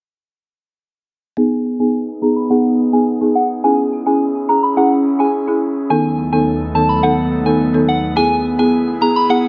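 An echo-heavy mix sits in a small room under a moderate spring reverb, giving this short cut from a longer dancehall piece a hypnotic, bouncy haze. At 106 BPM in a straight 4/4 and in G# minor, a woody folk marimba with medium mallets enters at 1.4 seconds, dry and rustic up front as it carries the accompaniment through a low-pass filter. At the same moment a soft synth bell takes the melody in a high register, its pure, vintage FM tone warbling through chorus and analog delay with a fast attack that decays gently. An airy, breathy pad joins at 1.8 seconds, holding detuned sustained chords underneath with a slow attack, a noise layer and a long release. A filter sweep runs across the whole passage as the harmony moves from G#m to C#m, then B7/D# and E.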